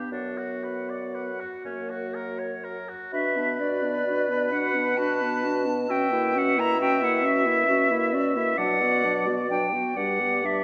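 Solemn and elegiac, this fragment of a slow romantic movement for wind quintet unfolds in B minor at a rubato 39-45 BPM, counted in dotted quarters in 6/8. A pure silver concert flute with a crisp attack and expressive vibrato carries the melody up front, while a warm oboe traces a second line beneath it in a roomy, classical style. A dark French horn with a soft attack and a clarinet with a punchy sound and smooth top fill in the accompaniment, and a mellow, distant bassoon joins on the bass at 0.1 s. The harmony moves from Bm/F# to F# before a new section opens on Bm at 3.1 s, passing through F#7/B and back to Bm before turning to G at 10.0 s. Moderate concert hall reverb gives the ensemble a spacious, resonant setting.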